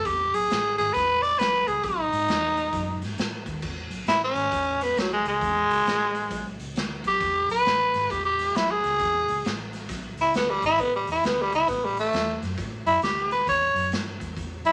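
Swaggering and soulful, this electric blues shuffle swings in 4/4, heard here as a short cut from a longer piece. A growling tenor saxophone carries the melody up front, its raspy, gritty tone clear and present, with vibrato and a jazz-style voice, and from 3.6 seconds it takes a solo that runs to the end at 14.7 seconds. Beneath it, a vintage muted fingered electric bass sits dark and round, its amped, foam-muted sound kept low in the mix. A raw garage drum kit joins at 0.1 seconds with crash cymbal, hi-hat, punchy kick and a medium-tuned snare, its saturated character and rolled-off top heard in a bright, pumping stone room. The chords move from E to B7, back to E, then to A5, and a moderate studio reverb lends the recording a natural sense of space.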